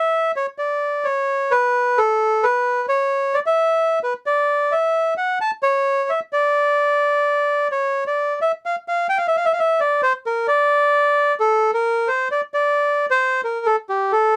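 A rubato tango feel in 4/4 carries this nostalgic, playful solo bandoneon, reedy and airy and up front in a dry, close 1970s-style studio sound, ranging from G4 to A5 and turning from major to minor at 8.2 seconds in a short cut from a longer piece.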